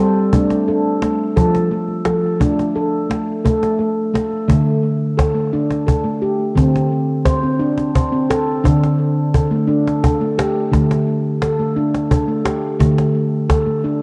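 A homespun cassette recording in a moderate spring-reverb room frames this hypnotic, gentle stretch of meditative world music, cut from a longer piece and moving in a straight 6/8. Up front, a ringing stainless-steel handpan played with the fingertips spins arpeggios from D3 to C5, its tone given a tape-echo trail and a cassette-tape grain, while chords move from F6 through D5 to Amadd11/D and Dsus4. A snappy cajon with snares sits close and dry beside it, entering at 0.2 seconds and playing until 13.7 seconds, while the piece shifts into a second section around 4.5 seconds.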